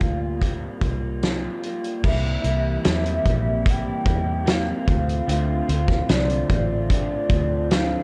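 A loose indie drum kit sits up front with a fat snare, punchy kick and dark cymbals, roughened by vintage 12-bit sampler grit, anchoring this sunny, nostalgic bedroom-pop excerpt at 74 BPM in straight 4/4, tuned slightly flat to A4 = 437 Hz. A round, foam-muted fingered electric bass and a slightly broken-up, lo-fi electric guitar through a small old amp, soaked in lush chorus and warbly pitch drift, carry the chords from C7sus4 through C7 to Dm7, while a detuned, warbling lead with tremolo, subtle chorus and analog delay sings the melody between D5 and G5. From 2.0 s a hollow, flute-like soft pad adds sustained chords in the background, and the mix sits in light reverb with a dark, warm production.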